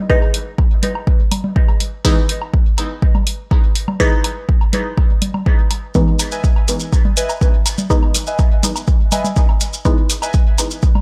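Hypnotic and deep, this dub techno excerpt moves in a straight 4/4 around a single Emaj7 chord, driven by an up-front, overdriven electronic kick drum and an overdriven hi-hat, both re-recorded in a small room, while dark, muted chord stabs with detuned sawtooth tone, phaser, sidechain pumping and dub echo decay throughout. Tape-warm woodblock and congas carry their own pumping and echo beneath the beat, and grainy maracas join at 5.9 seconds. At 6.3 seconds a warbling, nostalgic lo-fi synth keys riff enters, its chorus, phaser and dub echo sitting back within a digital ambience.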